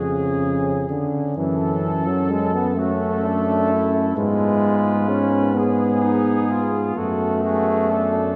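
A classical, hymn-like passage for brass band in F# minor, solemn and yearning, moving slowly at 43 BPM in dotted quarters in a flexible 6/8, cut from a longer piece. A mellow cornet with light vibrato and soft attack carries the melody in the background, while a clear, vintage-toned flugelhorn sings a second line. A close-miked trombone and a tuba sit up front, and a dark, distant trombone section adds very quiet accompaniment. Everything is steeped in wet church reverb with a 2.9-second decay, and lossy compression artefacts colour the sound as the harmony moves from C#/E# through F#m and Fdim/Ab back to F#m at 7.0 seconds.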